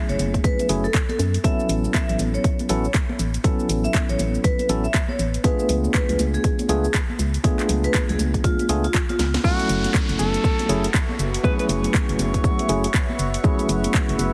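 A moody deep house groove at 120 BPM in F# minor opens with clean tine electric piano stabs pumping against a hollow, organ-like FM bass, a punchy up-front electronic kick, a house kit with cracking snare, handclaps, hi-hat and shaker, and very quiet ringing congas, while a metallic vibraphone carries the melody through dub echo. After a drum fill at 9.2 seconds, the drop arrives at 9.4 seconds, where a bright, forceful alto saxophone with scooped notes takes a brief solo through digital delay, over a background downlifter and a dark, reedy chamber violin section. A warbling, nostalgic lo-fi pad with chorus and phaser joins at 10.6 seconds, all held in a heavily compressed, radio-like sound with light small-room ambience.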